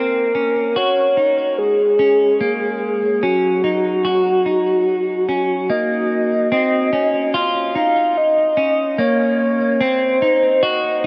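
A vast, wet ambient reverb with a 7.8-second tail bathes this short dream pop excerpt, giving it a floating, blissful haze in an unhurried, straight 4/4 pulse. Up front, a soft octave-layered synth lead sings the melody with a full, round tone that blends sine and triangle colours over a dark sub octave, its sustained notes shaped by a gentle attack, vibrato, chorus, phaser and digital delay. Beneath it in a lower register, a clean electric guitar plays picked arpeggios, twangy and warm, glistening with lush chorus and its own digital delay while also sitting close to the listener. Both parts play together from start to finish, moving from Gb to Ebm before the second section at 6.5 s turns to Bbm and then a more unsettled Cdim.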